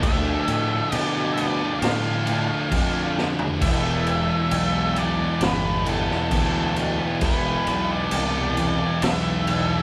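A slow, ominous stoner and doom metal passage, cut from a longer piece, opens with the full band playing live together in one room under light reverb. A raw garage drum kit sits up front, its boomy kick, medium-tuned snare, toms and crash sounding saturated and gritty with a rolled-off top, and it breaks into a fill from 3.2 to 3.6 seconds just before the harmony moves from D minor to E minor. Beneath it, a fingered electric bass with overdrive and fuzz growls low, bright and punchy. Three thick fuzz guitars carry the riff, two dark and picked, one of them very quiet, and a brighter double-tracked one set in the background. Over this sludgy wall, a dark, distorted octave-fuzz lead guitar picks out a melody in a higher register.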